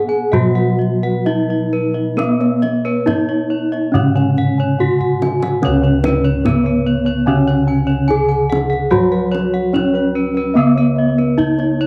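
This short cut from a longer piece carries the character of a home cassette recording, set in a light studio reverb. It is a ceremonial, shimmering Javanese gamelan passage in C# slendro, moving at a stately 63-73 BPM in a straight 4/4. Up front, a dark, smooth bronze metallophone struck with a wooden mallet carries the melody, its paired tuning producing shimmering beats. Beneath it, a close-miked, dry and full metallophone played with a horn mallet holds the accompaniment. A second horn-mallet metallophone adds high, bright arpeggios, joined by a set of round, beating bossed gongs in the same upper register. Airy low bossed gongs anchor the bass, while a deep kendang sits in the background in a live room, marking the shift into a new section at 5.6 seconds with a drum fill from 4.8 seconds.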